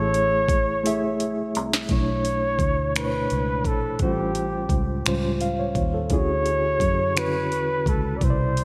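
A breathy, whispered flugelhorn sings an intimate melody with scooped notes and vibrato over a reedy electric piano with fast tremolo and a dark, foam-muted fingered bass, joined at 0.1 s by an electronic R&B kit of knocking kick, sharp snare, metallic hi-hat and finger snaps that plays a fill from 0.8 to 1.9 s, in this late-night, yearning slow six-eight R&B excerpt at 57 BPM, tuned to A4 = 437 Hz and moving through Amaj7, Bm11, A7alt and Dmaj9#11 inside lush hall reverb and bright 1980s-style digital production.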